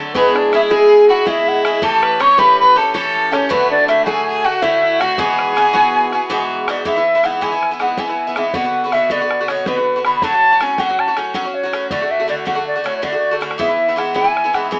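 A lively, cheerful Celtic slip jig in 9/8 at 107 dotted-quarter beats per minute, set in E mixolydian and cut from a longer piece. A mellow wooden flute carries the tongued, expressive melody with vibrato and a distant quality, while a bright, metallic Irish bouzouki picks up-front accompaniment on double strings and a damped, tight bodhran keeps close, dry percussion. A clear, biting fiddle adds an intense second line only until 6.5 seconds, and the whole has a wet studio reverb and the sound of AM radio.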